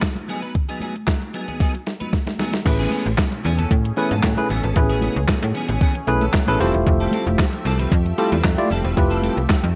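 A dry, close-sounding slice of early-eighties boogie funk at 114 BPM in a straight 4/4, smooth and feel-good. It opens with a twangy, picked clean electric guitar riff thickened by ensemble chorus, very quiet high-tuned congas, and an up-front 12-bit drum machine whose thumpy kick, fat snare, hi-hat, handclaps and crash sit in gated reverb. After a drum fill ending at 2.7 seconds, a snappy FM bass with a metallic, slap-like attack and a worn, slightly out-of-tune tine electric piano enter together, joined at 3.1 seconds by a lush, detuned sawtooth unison pad in the background, treated with chorus and phaser, as the harmony moves from B6/F# to Amaj9 and then Fmaj9 in this cut from a longer piece.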